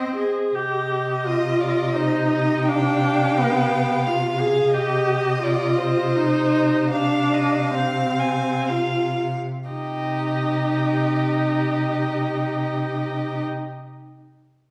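Melancholic and elegiac, this fragment of a slow romantic movement for string quartet in triple time moves with rubato, easing back between 3.7 and 9.7 seconds before a new section arrives at 9.7 seconds. A smooth, even first violin carries the melody with vibrato above a clear, focused second violin line, while a rich viola and cello sit up front, shaping the accompaniment and bass with soft attacks, portamento and expressive vibrato. The quartet is heard from further back in a recital hall, wrapped in a wet reverb.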